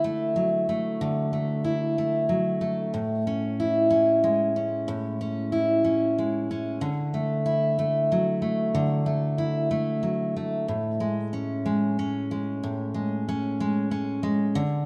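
Tender and swaying, this short pop excerpt moves at 62 BPM in a lilting 6/8, with a single picked steel-string acoustic guitar playing alone and up front, its full-bodied dreadnought tone warm. Chords of Dadd9 and Amaj7 alternate in A major, shifting into a new section at 10.7 seconds. A moderate, lush hall reverb surrounds the guitar, though the mix keeps the rough, intimate feel of a home demo.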